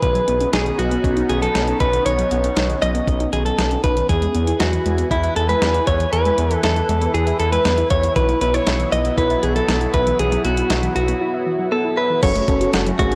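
Synth-pop with a nocturnal, melancholic mood, cut from a longer piece, where a bright, picked clean electric guitar carries the melody up front through spring reverb and tape echo, over a lush, detuned unison pad with chorus and phaser and a soft, round pluck playing dark arpeggios in the background. A smooth sawtooth-and-triangle synth bass sits up front beside a thumpy, sampler-style 12-bit drum machine with kick, snare, hi-hat and crash cymbal, and a mellow FM electric piano with tremolo enters only at 12.2 seconds. The overall sound is dry and gritty, with transformer saturation and cassette tape colouring a light reverb.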